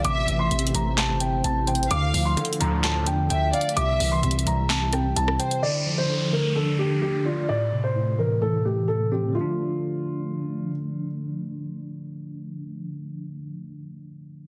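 Menacing and melancholic, this half-time trap excerpt at 129 BPM in D minor pairs a dark, boxy concert grand piano melody and a lush, vibrato-laden violin section, both trailed by delay, with a phased tine electric piano, a glassy FM pad in the background, a punchy, heavy 808-style bass and a sharp, up-front trap kit of handclaps, hi-hat, rim click and snare, while a fat, nasal polysynth stab flashes at 2.6 seconds before the beat drops out at 5.6 seconds for an electronic downlifter as the piano and electric piano carry on over light digital ambience in a dense, heavily limited mix.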